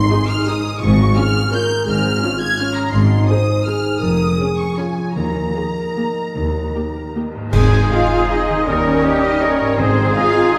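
A clear, intense violin section carries the melody of this sweeping, festive orchestral ballroom waltz in Ab major, played in 3/4 with a rubato feel at around 145-183 BPM and cut from a longer piece. A second, softer violin section sings an expressive line beneath it, while woody violas, lush cellos and a rich double bass section fill out the harmony and bass. Dark French horns hold sustained chords from a roomy distance, and a bright, ringing concert harp spins arpeggios in the background. Very quiet timpani with hard mallets sound at the opening and return at 5.2 s, joined there by a close, dry burst of cymbal swell, clash cymbals and concert bass drum. At 7.5 s a band accent opens the second section, bringing in a pure, silvery flute, a clear oboe, a very soft clarinet and a warm bassoon, with hushed trumpet stabs following soon after. A generous scoring-stage reverb gives the whole orchestra a spacious, ballroom-like glow.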